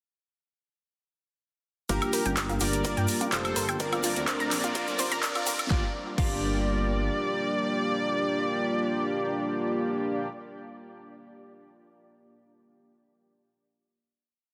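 Dense, heavily limited and lightly reverberant, this progressive house piece in G minor at 126 BPM feels expansive and bittersweet. From 1.9 s it builds over Gm7 and Bbadd9/G as filter sweeps open the round analog pluck's six-step arpeggio, which drifts against the bar, and the glossy chorused polysynth's syncopated stabs; a very quiet riser joins them. Meanwhile, an overdriven four-on-the-floor kick and a big-room kit with huge snare, metallic hats, claps, woodblock and crash drive things alongside a gritty looped breakbeat, a grainy egg shaker, faint tape-toned congas and a rumbling, detuned saw bass. Around the end of the build at 5.7 s, the percussion and then the bass fall away. That leaves the smooth supersaw riff in thirds and sixths, the polysynth's stabs and the warbling, evolving wavetable pad pumping on a held final Gm7.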